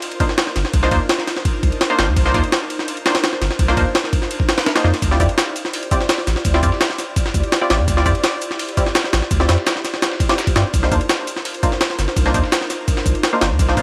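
A straight 4/4 jungle groove at 168 BPM drives this frenetic yet nostalgic drum and bass excerpt, built on a pitched-up, overdriven breakbeat kit up front with a thumpy kick, high-tuned snare and ride, while a second, dusty soul-style kit of hi-hat, shaker and medium-tuned snare joins in the background at 5.0 seconds. Beneath it, a soft, round dub sub bass holds sustained low notes, and filtered, detuned sawtooth chord stabs with chorus and dub echo pluck muted, evolving shapes over Cm11 moving to Dm11 and back. The sound is dry and gritty, coated in vinyl crackle.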